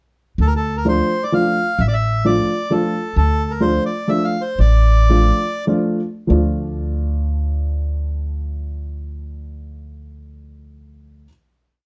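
Nostalgic and whirling, this short, complete musette waltz in D minor moves in a straight 3/4 at 94-133 BPM, opening on a D minor chord. A reedy, smooth bandoneon carries the melody up front, shaping period phrases from a compact motif before it stops at 5.6 seconds. Beneath it, a pizzicato upright bass with steel strings plays woody root-and-fifth lines on the main beats. A dark, mellow upright piano adds close-voiced backbeat chords with short sustain. The tempo slows from 3.2 to 6.3 seconds, leading into a final chord played by bass and piano, set in moderate studio reverb with a warm production.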